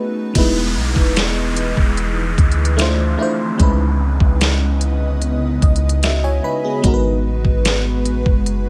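A slow, straight 74 BPM groove in 4/4 carries this tender, romantic contemporary R&B excerpt in E major. A lush, dreamy FM electric piano with chorus and phaser and an ethereal, airy pad with ensemble chorus open at 0.0 seconds, then a deep, round 808-style bass and a smooth drum kit with knocking kick, deep snare and 12-bit sampler grit arrive at 0.4 seconds alongside a downlifter, while the electric piano plays a fill from 5.2 seconds over chords moving from Emaj7 through Dm9 and C#m9 to G#m7 in a digital ambience.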